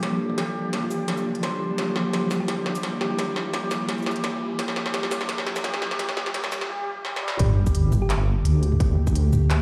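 A half-time drum and bass groove at 171 BPM with a light swing sets a dark, cinematic tone in G dorian. A crisp, clanging industrial drum kit with handclaps, shaker and toms rides over a tense, string-like bowed drone, a shimmering hammered santur in delayed arpeggios, a flickering grainy texture, a round tine-like synth pluck heard in brief glimpses, and a background riser and sub drop. After a filtered build-up with drum fills, the drop lands at 7.4 seconds as a hard-clipped electronic kick and a deep, wobbling, up-front bass enter, all set in a lush hall reverb.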